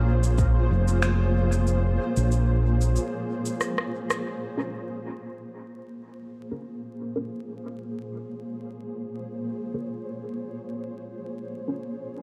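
Spacious and meditative, this ambient dub fragment in Bb minor drifts at 93 BPM with a lightly swung 4/4 feel, built on a cloudy, detuned granular pad holding a Bbm7 chord up front while a round, punchy fingered electric bass plays until 3.0 s, a deep layered electronic kick sits in the background, and tape-toned electronic cabasa, finger snaps and rim click carry dub echo into a short break and drum fill; from 4.3 s a filter sweep reshapes the pad, and muted sawtooth-and-square chord stabs with a sub octave, phaser and subtle chorus enter at 4.6 s, all over a bed of vinyl crackle and light reverb.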